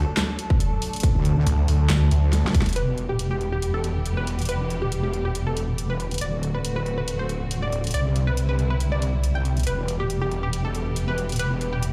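Menacing and aggressive, this heavy wobble dubstep excerpt moves at 139 BPM in a swung half-time feel in E minor, opening on a drop where a detuned, resonant wobble bass runs throughout beneath distant, lush string chords that pump against the sidechain through a low-pass filter. A punchy, overdriven electronic kick sits up front until 2.6 s, a growling, distorted saw bass snarls briefly from 1.5 s, and a drum fill leads into the second section, where the kit's huge snare, bright hats and handclaps carry on. From 2.8 s a wave-folded unison pluck with digital delay adds a bright melody over chords moving from Em through D7 and Cadd9, all heard dry yet set in the large reverb of a bare room.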